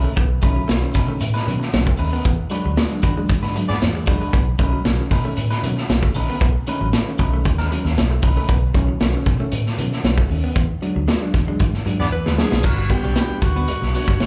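Funk with a gritty, strutting feel, cut from a longer piece and heard as a live gig through a club PA with small-room reverb. An up-front, saturated garage drum kit with a boomy kick and dark cymbals drives a round, foam-muted fingered bass, while a twangy, compressed clean guitar and a reedy electric piano, both with slapback echo, sit over a slightly broken-up, lo-fi guitar riff in the background. The band hits accents together, a clear horn section punches short bursts at 3.7 and 12.0 seconds, and as a drum fill rolls in at 12.1 seconds, a warm alto saxophone with light vibrato takes the melody.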